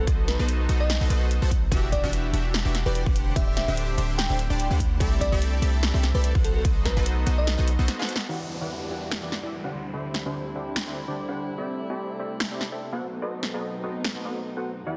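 Lush and bittersweet, this future bass excerpt moves at 146 BPM in a half-time 4/4 feel with a light swing on the 16ths, cycling through B7b9, Em9, D9sus4 and C69 chords. A punchy, airy supersaw stab carries the riff throughout, its detuned sawtooth layers shaped by a low-pass filter, sidechain pumping and dub echo, while a dark, nasal chamber string section holds sustained chords in the background with a reedy gut-string tone, a vintage 12-bit sampler grit and sidechain pumping. In the opening drop a sparkling, bell-like FM electric piano sings the melody with chorus, pumping and dub echo, over a deep, boomy 808-style bass with sidechain pumping that sits up front. A punchy, layered electronic kick drives the groove until 6.9 s, and a big-room dance kit of finger snaps, hi-hat and a soft-clipped snare plays on through most of the clip, with a short drum fill in the break before 8.3 s. 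The piano and bass drop out there, and the second section brings in a quiet electronic downlifter. Light digital reverb surrounds the parts, and the master is dense and heavily limited.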